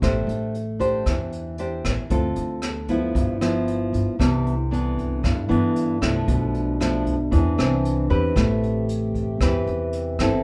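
A fingerpicked nylon-string guitar, dark and full-bodied with audible finger squeak, sits up front alongside a woody pizzicato upright bass and a brushed jazz drum kit with a boomy kick, hi-hat and rim clicks, setting a wistful, smooth bossa nova groove at 115 BPM in A minor. At 4.2 seconds the harmony shifts toward C major and a mellow French horn section enters in the background with sustained, lightly vibrato chords, moving through Cmaj9, Bm7b5 and E7alt before settling on Am9. The band plays together live in a studio room with moderate ambience, and the clip is cut from a longer piece.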